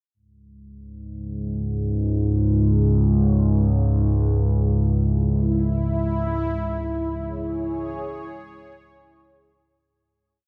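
This dark ambient drone piece is cavernous and unsettling, set in a huge ambient reverb with an 8.1-second tail. An analog drone enters at 1.1 s, holding low and up front. Its warm, mellow sawtooth and pulse-wave tone evolves through pulse-width modulation and a moving notch, shaped by a slow attack, long release and chorus. At 5.2 s a sweeping resonant pad joins with slowly shifting sustained chords in a higher register. Its detuned sawtooth and sine layers sound full-bodied, with a sub octave beneath them. A filter swell and chorus color the pad as the whole piece fades out from 5.0 s to its close.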